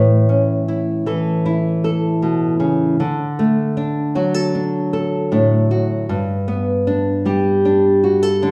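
Peaceful and nostalgic, this short folk excerpt at 77 BPM in 4/4 features a solo nylon-string guitar, fingerpicked, small and up front, moving through Aadd9, D and G in A mixolydian over 8.5 seconds, its warm acoustic tone set in a wet, large studio reverb.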